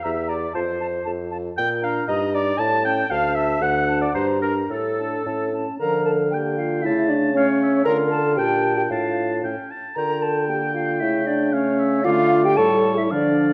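In a quick 2/4 at 115 BPM with a rubato feel, this restless, stormy classical-period movement for wind quintet in D minor sets a silver concert flute, pure and distant with vibrato, on the melody above a punchy oboe second line with light vibrato, while a mellow French horn and smooth-topped clarinet fill the accompaniment and an up-front, dark bassoon holds the bass. The harmony drives repeatedly from Dm through Gm to A and A7 chords, with the second section arriving at 5.8 seconds. A recital hall's wet reverb and a dark, warm production colour this short cut from a longer piece.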